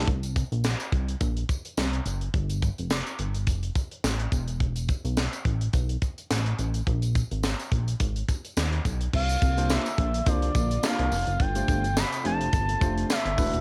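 A dry home cassette recording carries this smooth, feel-good early-eighties boogie funk at 106 BPM, cut from a longer piece and swung on the 16ths. A tight, up-front acoustic drum kit with a high-tuned snare, handclaps and crash cymbal, plus a jingly tambourine in the background, plays alongside a glossy, dark, filter-plucked synth bass with chorus, beneath suspended chords such as Gsus2 and Bb7sus4. At 9.1 seconds a mellow sawtooth lead enters with portamento, vibrato and chorus, joined by a lush, very quiet string section and, from 9.6 seconds, a barky, overdriven tine electric piano through a combo amp.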